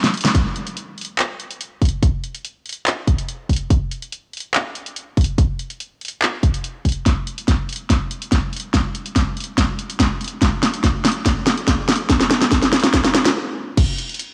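Lush and playful, this future bass passage, cut from a longer piece, moves with a half-time feel in 4/4. A pop drum kit opens it with a brief fill and a band accent at 0.2 seconds, bringing crash cymbal, handclaps, hi-hat and a fat snare, with warm hats sitting up front in a layered, produced sound. An electronic kick drum joins just after, punchy and placed forward in the mix, adding its own layered electronic weight alongside the kit. From 7.1 seconds the drums turn into an extended fill that drives a build-up, before everything drops into a stop at 13.4 seconds. A moderate, lush hall reverb surrounds the percussion, giving the beats a roomy, polished sheen.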